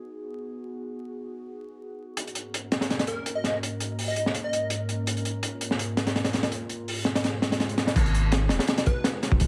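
Atmospheric and raw, this drum and bass cut with a jungle edge opens on a warbly, nostalgic tape-like pad of detuned sustained chords, soon joined at 2.2 s by a crunchy breakbeat kit with a high-tuned snare, tight kick and dark cymbals sitting gritty and up front. A punchy, bright unison lead with dub echo and cassette-tape colour plays a short catchy melody. After a very quiet electronic swell, the drop arrives at 8.0 s with a deep, thick saturated sub bass, all under a layer of vinyl crackle in a dry, close sound.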